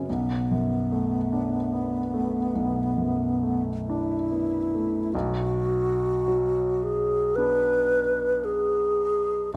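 Wistful and mysterious, this short cut from a longer impressionist classical piece pairs alto flute with grand piano in B dorian at a slow, rubato pace of 43-56 BPM in 4/4. The alto flute carries the melody in its low-to-middle register, airy and hollow with vibrato, tongued notes and lifted highs, sitting up front in the mix. Beneath it, the grand piano plays accompaniment that is clear, intimate and polished, with long sustain and audible action noise that keeps it present and close. The harmony rests on Bm7 before shifting to Bm6 at 5.1 seconds, where a second section begins and runs to the close at 9.6 seconds. A moderate scoring-stage reverb and a dark production give the duo a soft, enveloping space.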